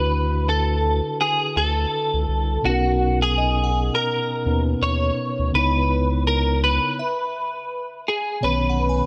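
A light reverb surrounds this short excerpt of contemporary R&B, and the mood is romantic and dreamy at 83 BPM in 4/4, with a swung sixteenth-note feel in B major. A clean, picked electric guitar carries the melody up front between F#4 and C#5, its compressed tone thickened by an ensemble chorus. Beneath it, a mellow tine electric piano supplies the accompaniment, joined by a round, deep analog bass with a dark, sustained sine-like body. From 3.4 seconds a glassy, crystalline FM synth bell drifts in the background with chorus and delay, its notes decaying high above the band. The harmony moves from D6/9 through Bmaj9 and C#m9, a stop arrives at 7.0 seconds, and the passage settles on Badd9 at 8.4 seconds.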